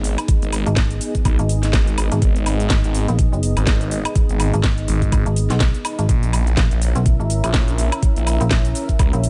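A dark analog pad, a phased, detuned saw bass and a garage drum kit open this bouncy, aggressive bass house excerpt together, with an electronic kick entering at 0.3 seconds and a metallic FM bass joining at 0.7 seconds. The pad holds sustained chords that are deep, moody and full-bodied, with a slow attack, long release and chorus, and it pumps with sidechain compression. Up front, the saw bass swirls through its phaser, thick and saturated by overdrive, while the FM bass adds a mellow, digital, decaying tone with a quick attack; both basses also pump with the sidechain. The garage kit brings a cracking snare, metallic hats, shaker and woodblock with a swung sixteenth-note feel, and the knocking, tape-warm kick sits prominently in the mix. The harmony rests on G# minor before shifting to A# diminished at 6.1 seconds, all set in a digital ambience with a subdued top end.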